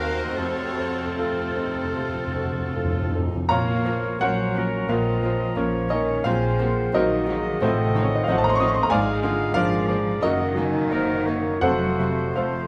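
Tragic and passionate, this romantic movement for piano and orchestra moves with a rubato sway, the clear, up-front baby grand carrying the melody over a very quiet, vibrato-rich violin section. Oboe, pure-toned flute, dark woody second violins and a distant clarinet weave second lines, while bassoon and a smooth-topped viola section fill the accompaniment. Mellow French horns hold sustained chords, lush cellos and bowed double basses anchor the bass, and background calf-head timpani play a fill from 0.4 to 3.4 seconds and return at 11.6 seconds, all in a moderate recital-hall reverb.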